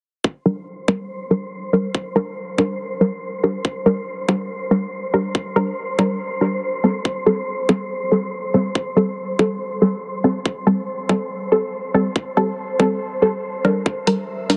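A muted, detuned sawtooth dub chord stab with phaser, dub echo and a filter sweep sits up front over a tight, layered electronic kick and a breathy, wind-like tuned noise texture in this brooding, meditative deep dubstep fragment in G dorian at 141 BPM with a swung half-time feel, where a gritty, pitched-down overdriven hi-hat slips in only at 14.1 s, all bathed in a huge ambient reverb and squeezed into a heavily compressed, radio-like sound.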